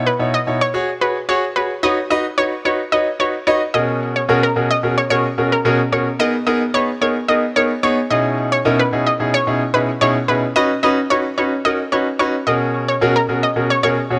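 A straight 4/4 pulse at 110 BPM drives this upbeat, carefree pop passage in B major, tuned to A4 = 438 Hz and cut from a longer piece. A brilliant concert grand piano carries the accompaniment from 0.0 s, spanning B2 to D#5 with a deep bass, short sustain and a polished, up-front presence. Over it, an analog pluck sings the melody between A#4 and D#5, its detuned sawtooth tone round and warbling with a vintage character, a fast attack, a decaying tail, a filter sweep, chorus and tape echo. The harmony leans on add9 and suspended colours, opening on C#madd9/B and F#sus2 before a longer stretch from 1.8 s cycles through Badd9, F#add9/B, G#madd9/B and C#madd9/B. Light reverb and a small room ambience frame the two parts.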